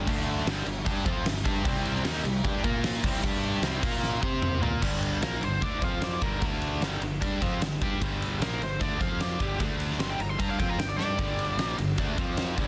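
Heavy and aggressive, this hard rock passage in G minor drives at 151 BPM in straight 4/4, with a double-tracked, overdriven guitar riff up front over a growly fuzz bass and a huge arena drum kit with a punchy kick and fat snare, whose fill at 4.0 s leads into a biting lead guitar solo that enters at 5.2 s with tape echo, set in light reverb and a dense, heavily limited modern master.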